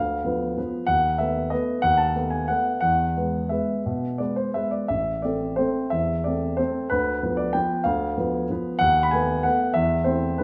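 A classical piano waltz in 3/4, nostalgic and elegant, moving at a tempo between 168 and 204 BPM with a flexible rubato feel. A solo grand piano, polished and up front, plays for the full 10.4 seconds across a range from A1 to B5, passing through chords such as B7/D#, E and Am. The piano sits in a wet large studio reverb heard from further back in the room, and this short passage is cut from a longer piece.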